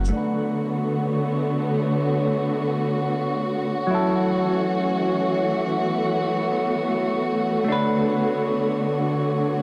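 Nocturnal and ghostly, this short future garage fragment in B minor floats in free time, cut from a longer piece. Up front, a muted studio string section bowed con sordino holds dark, veiled chords with vibrato and a smooth top, moving from Bm7 to F#m7 at 3.9 seconds and back to Bm7 at 7.7 seconds. Beneath it, a clean, fingered semi-hollow electric guitar plays accompaniment through vintage 12-bit sampler grit, a low-pass filter and analog delay, with a filter sweep running across it from 0.1 seconds. High in the background, a glassy texture of drifting sine-like overtones with slow attacks and long releases shimmers through chorus and its own reverb. All three parts sound from start to finish in a huge ambient space with a 4.6-second reverb tail, captured in a dense, heavily limited modern master.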